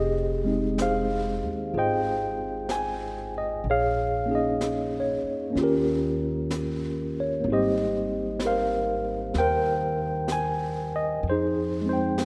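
A slow 63 BPM swing in 4/4 carries this melancholic, wistful jazz ballad in F minor, cut from a longer piece, with brushes on a high-tuned snare and hi-hat entering at 0.8 s beneath a woody, warm pizzicato upright bass. Up front, a worn, lightly overdriven tine electric piano, slightly out of tune and heard through its built-in speakers, comps through Fm9, Bbm7, Eb7 and Abmaj9 before returning to Fm9 at 11.2 s. A lush hall reverb softens the rough home-demo mix.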